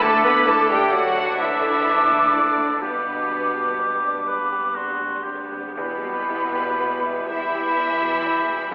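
Sorrowful and moving, this 8.7-second cinematic fragment in E minor drifts at 41 BPM in a rubato 6/8 over Dsus2, G and Em chords: a close violin section carries the expressive melody with vibrato and portamento, while a bright, airy silver flute, a vintage-toned oboe, a mellow clarinet and a rich, distant second violin section weave supporting lines. Beneath them, a clear grand piano with a deep bass and a distant viola section provide accompaniment, a dark French horn section holds very quiet chords, and a smooth cello section joins a very quiet double bass section on the bass, all bathed in a lush scoring-stage reverb and filtered through a narrow telephone-like sound.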